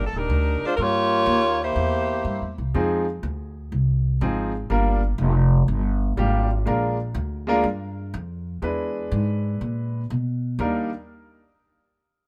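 A mellow saxophone section with light vibrato and a smooth top carries the melody up front for the opening 2.5 seconds of this swinging, energetic big band jazz clip at 122 BPM in Eb major, over a woody, thumpy pizzicato upright bass on gut strings that runs to 10.9 seconds, while a clear, intimate baby grand piano with audible action noise enters at 2.7 seconds to accompany through the Fm7, Gm7, Bb7 and E7 changes, all set in light reverb.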